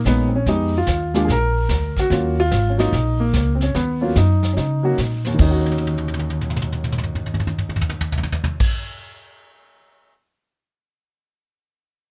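Smoky and late-night in character, this short jazz piano trio excerpt swings in four with a relaxed, loping eighth-note feel. A warm baby grand piano carries the melody, sounding natural and up front, while a woody upright bass plucked on steel strings anchors the low end. A vintage brush drum kit fills out the trio with dark cymbals, a medium-tuned snare and a punchy kick, its small, pumping room giving the brushes an intimate, close presence. The harmony moves through Fm7b5 and Bb before settling on Ebm7. After the opening passage, the music shifts into a new section at 5.4 seconds, where the drums launch a fill at 5.6 seconds that runs until about 8.6 seconds. The bass and piano then drop away, leaving the kit to ring on alone until 10.1 seconds.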